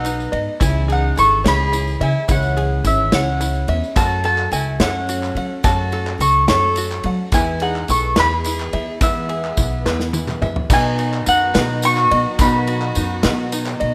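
Indie folk in a lilting 6/8 at 71 BPM, anthemic and warm, this short cut from a longer piece builds steadily over a chord progression that opens on B and moves through C#m, F#m and E. A picked, woody mandolin carries the melody, shadowed by a rich, nasal fiddle with light vibrato and an airy bow, while a fingerpicked open-back banjo adds plunky, twangy arpeggios. Underneath, an up-front, thumpy gut-string upright bass and a natural country drum kit with a punchy kick and dark cymbals drive the pulse, joined by a close, jingly tambourine. A shimmering, octave-doubled twelve-string guitar and a mellow, dark upright piano sit very quiet in the accompaniment, and hollow, vintage-sounding group handclaps enter in the background at 4.0 seconds. After a drum fill, a very quiet chamber string section with a biting, earthy edge arrives at 10.7 seconds with sustained chords as the progression returns to B, all within a small-room reverb and a rough home-demo mix.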